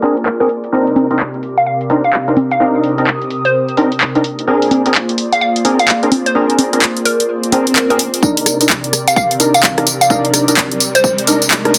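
Moody and late-night, this excerpt of swung two-step UK garage pairs a dark, hollow organ stab and a bouncy, detuned square-wave pluck melody over a breathy, pumping pad and an up-front, overdriven house kit of bright hats, handclaps, rim clicks, tambourine and congas, with filter sweeps and a background swell leading to a build-up at 8.2 seconds where a punchy electronic kick enters beneath a rising riser, all in dense, limited sound with a short studio reverb.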